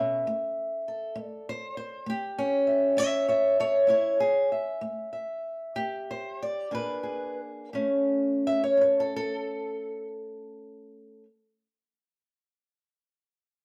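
Rolling in a straight 12/8 at roughly 58-67 BPM with a slowdown from 2.7 to 7.7 seconds, this rollicking, soulful acoustic country blues fragment in A mixolydian features a lone fingerpicked old ladder-braced acoustic guitar, dark, woody and boxy on old strings and sitting up front, moving from A to Bb7 at 6.7 seconds and back to A at 7.7 seconds within a large studio's moderate reverb before the guitar stops at 11.2 seconds.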